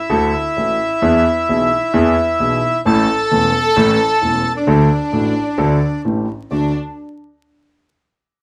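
In a rubato 4/4 feel, this passionate, playful tango fragment sets a reedy, bright, close-miked bandoneon melody up front over a grand piano accompaniment with audible action noise and long sustain, while a chamber violin section enters at 2.9 s with a soft-attack, sul tasto second line touched by light vibrato, the whole band playing live in one small, wet-sounding room under a layer of vinyl crackle.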